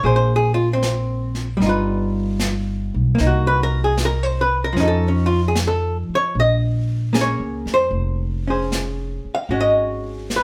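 From the first moment, a dark, clean, compressed archtop guitar sits up front, picking out its accompaniment alongside a woody pizzicato upright bass that is also close and present, with an airy, polished brush kit on snare and hi-hat, as a melancholic, smoky jazz ballad in Bb minor unfolds at 76 BPM with a gentle swing, moving through Bbsus2, G7b13, Cm7b5 and Faug7 before turning to Bbm9 at 6.3 seconds and Ab7sus4 at 9.5 seconds, all captured as a live band in one room with moderate reverb in this passage taken from a longer piece.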